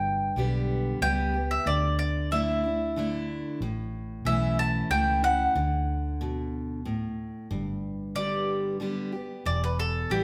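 A warm, double-strung mandolin carries the melody up front in this sunny, heartfelt honky-tonk and classic country waltz at 92 BPM, joined throughout by a full-bodied, picked dreadnought acoustic guitar and a dark, foam-muted vintage electric bass with a round, amped tone. The band plays live in one room, wrapped in a wet large-studio reverb, as the chords move from G through Dsus2, A and D before the mandolin takes a solo over G and Em from 7.5 seconds. It is cut from a longer piece and runs 10.2 seconds.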